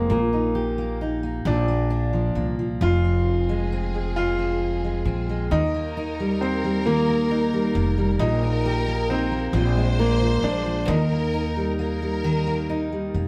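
An open-toned baby grand piano carries the melody up front in this tender, swaying six-eight pop ballad fragment, over full-bodied fingerpicked steel-string acoustic guitar and a woody, growly pizzicato upright bass, while a lush bowed violin section with vibrato and a soft attack enters further back at 2.8 s with a second line, the band playing live together in a moderate stone room.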